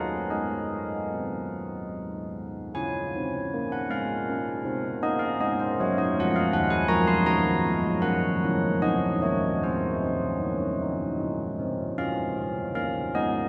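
Festive yet serene, this short classical fragment is a church-bell tune in a gentle three-beat metre, cut from a longer piece. A solo carillon carries everything from 0.0 to 13.5 seconds, ranging from Eb3 up to C6. The bells have a bronze, ringing tone with a distinct minor-third overtone, and a padded clapper gives each strike a mellow, soft edge while the instrument still sits up front. A cathedral reverb with a long 6.5-second tail surrounds the carillon, lending the sense of hearing it from further back in a vast stone space. After a brief opening phrase, the tune moves into a longer second passage that touches Gb and Ab harmonies before settling on Db at 12.0 seconds.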